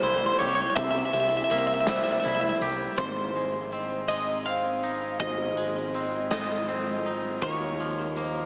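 A compressed twelve-string electric guitar carries the melody up front from the first moment, its tape echo trailing over a brooding, melancholic post-rock passage at 54 BPM in a slow 6/8. Beneath it, a twangy, scooped clean guitar and a mellow soft-mallet vibraphone play arpeggios through tape echo, while an icy, crystalline pad with chorus holds sustained chords in the background and an overdriven, growling picked bass anchors the low end. A huge arena drum kit with a punchy kick and pumping room sound plays hi-hat, kick and snare until 8.3 s, the harmony moving from C7 to Ab at 3.0 s and settling on Ebsus2, all set in a lush hall reverb with a small-speaker character.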